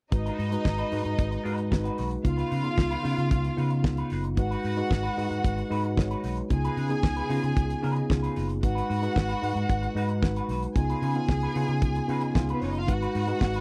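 Sultry and glamorous, this disco excerpt rides a straight 4/4 groove as a mellow, slightly worn tine electric piano and a clean semi-hollow guitar through wah alternate between G#m7 and C#9 chords every couple of seconds. A damped 70s drum kit with a fat snare and tight kick sits up front, a dark, round fingered bass anchors the low end, and a clear chamber string section adds a bowed second line with focused vibrato. The dry, close sound has the feel of a 1970s studio, with all five parts playing throughout the 13.6 seconds.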